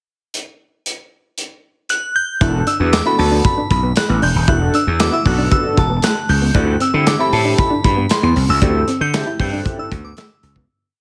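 A gritty, growly slap bass drives this slick, late-night early-eighties boogie funk piece with a fat syncopated line and chromatic approach notes, over a punchy studio drum kit whose snare is layered with handclaps, while a glassy FM synth bell carries hook phrases from 1.9 seconds, a glossy chorused polysynth plays rootless syncopated chords, a dark mellow electric guitar fingers a muted single-note line in the background, a jingly tambourine taps the backbeat very quietly, and the whole short piece fades out from 8.6 seconds.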